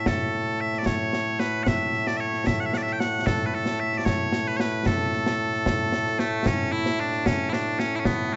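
A dark, warm mix with light reverb frames this short cut of stirring, ceremonial Scottish pipe music in A major, moving at 75 BPM in a straight 6/8. Loud, piercing bagpipes carry the continuous solo melody up front from A2 to G5, while a close, dry concert snare drum and concert bass drum with bright cymbals support them from 0.1 seconds. The tune passes into a new section at 6.5 seconds before the clip breaks off at 8.4 seconds.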